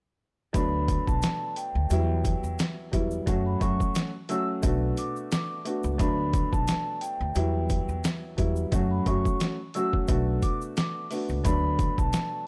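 A boom-bap groove at 88 BPM in 4/4, swung at 55% on the sixteenths, drives this nostalgic, soulful hip-hop passage in D major, cut from a longer piece. The sampler-style drum kit sits up front, pitched down and compressed, with a thumpy kick, a medium-tuned snare and hi-hat roughened by overdrive and 12-bit grit, while a grainy egg shaker ticks in the background. A pizzicato upright bass with steel strings and a woody tone holds the low end between B1 and F#2, thickened by tube saturation. The dark upright piano, also up front, plays mellow, intimate accompaniment with audible action noise and a vintage smoothness, cycling through D6, Emadd9, F#m and Bm7 before returning to D6 at 11.5 seconds. Above it, a soft-mallet vibraphone with its motor off carries a ringing, metallic melody between G5 and E6, trailed by tape echo. The whole recording is dry and gritty, with hardware transformer saturation and little reverb.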